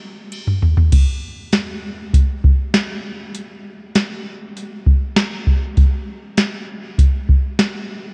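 Bathed in light reverb and the worn, warbling pitch drift of old cassette tape, this blissful, dreamy dream pop excerpt at 99 BPM in a straight 4/4 centres on a soft vintage analog rhythm box, up front and tape-warm, which enters with a drum fill at 0.3 seconds and plays until 7.7 seconds with a deep kick, crisp snare, metallic hi-hats, crash and ride cymbals and toms.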